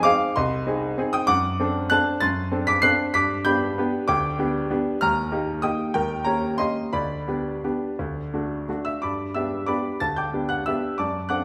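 A classical piano waltz in 3/4, this short excerpt from a longer piece has an elegant, sparkling mood and a flexible, rubato feel. A clear baby grand piano plays solo throughout, spanning a broad range from the low bass to the high treble. Its tone is natural and up front, with short sustain that keeps each note crisp. The harmony moves from an opening Fm7 through D7/F#, G and a colorful turn to Eb and Eb7 before settling on G/D and D. At 9.0 seconds a new section begins on G, carrying the excerpt on until it breaks off at 11.4 seconds, all set in the glow of a wet recital hall reverb.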